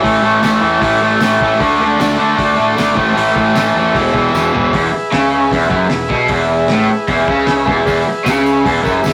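A rough rehearsal-room recording with light reverb captures a swaggering, rowdy garage rock excerpt at 153 BPM, where a bright, double-tracked overdriven guitar riff sits up front over a punchy fuzz-picked bass, a muffled cloth-damped drum kit with a fat snare and a fill at 4.3 seconds, buzzy combo organ chords with light vibrato, and a distant jingly tambourine, as the chords move from A through D and back to A before E arrives and the music settles in E major at 4.7 seconds.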